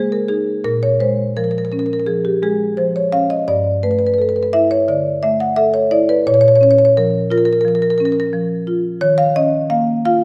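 A woody, up-front marimba on rosewood bars, struck with medium mallets, rings into the lush reverb of a recital hall. This playful, warm fragment of a contemporary classical piece for solo marimba moves in a rubato 4/4 around 86 BPM, spanning G2 to Gb5. Its harmony drifts from Bbm7 through G69 and Bbm before settling on Ebsus2 near 9.0 seconds.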